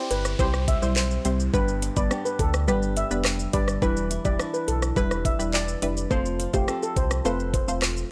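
A dry, gritty hardware recording with digital ambience frames this tough, sultry dancehall excerpt at 105 BPM in E phrygian, moving through C, G, Em7 and F. Up front, an electronic island pop kit drives a knocking kick, metallic hats, handclaps, rim click and shaker over a deep sine-and-triangle sub bass with octave, while detuned sawtooth chord stabs, punchy with a filter pluck, chorus and phaser, enter at 0.4 seconds. A mellow steel pan lead struck with soft rubber sticks shimmers through tape echo above fingerpicked flamenco guitar arpeggios on fresh strings, and a downlifter sits in the background until 3.8 seconds.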